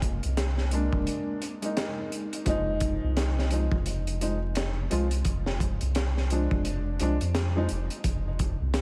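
A felt-muted upright piano stands out, soft and boxy with audible action noise. It enters at 0.7 seconds, its mellow tones shimmering through harmonic tremolo and tape echo. This smoky, hypnotic trip hop piece, cut from a longer track, moves at 86 BPM in 4/4 with a swung sixteenth feel in F dorian. Beneath it, a round analog bass blending sawtooth and sine tones sits deep and sustained. A crunchy breakbeat kit of hi-hat, tight kick and high-tuned snare sounds saturated and gritty, its top rolled off. The harmony rests on Bb7sus4 over F through the opening and a short break, moves to Fm7 at 2.5 seconds, and falls away at 8.0 seconds, all wrapped in light reverb, small-room ambience and vinyl crackle.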